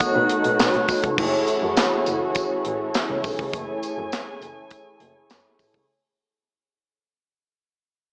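Late-night and danceable, this brief cut from an early-eighties boogie funk piece moves at 102 BPM in a straight 4/4, sitting in F# dorian with a tuning slightly below standard. A tight funk drum kit sits up front with a dry, polished sound, its medium-tuned snare, crash cymbal, handclaps, hi-hat and tight kick framed by gated reverb, while a jingly, band-limited tambourine rides in the background. Mellow synth brass, round and detuned with chorus and vibrato, carries the accompaniment from D#4 to C#5, and a dark studio string section holds lush, woody sustained chords alongside it. A muted double bass, bowed by one player with a veiled, soft-attack tone, anchors the low end between F#1 and B2. A metallic, inharmonic FM bell with chorus and slapback echo rings out a single F#6 at the start, stopping at 0.9 seconds, and after the harmony shifts from B7 to F#m7 at 1.2 seconds the music fades out through the end, all heard through a light reverb with a small-speaker character.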